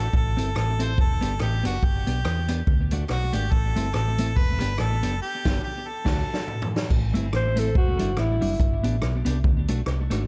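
A clear harmonica with tape echo carries the tune over clean, compressed, echoed electric guitar and a round, hollow-body fingered bass sitting up front, opening this mischievous, driving ska cut at 142 BPM in A dorian with a swung feel and very quiet, crisp handclaps. A roomy big-band drum kit with a punchy kick and rolled-off top swings beneath the Am–Em7–G–D cycle, and the band hits an accent capped by a drum fill just before 6.9 s. From 7.4 s a mellow alto saxophone with vibrato takes a brief echoed solo, the whole mix dark and dry.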